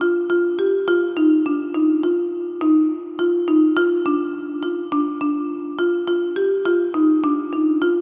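Bathed in a long, wet church reverb of 3.9 seconds, this intricate, brooding progressive instrumental excerpt features a solo marimba, played with medium mallets on woody padauk bars, sitting mid-forward and up front as it moves between D4 and G4 at 104 BPM in a straight 5/4 for 8.0 seconds.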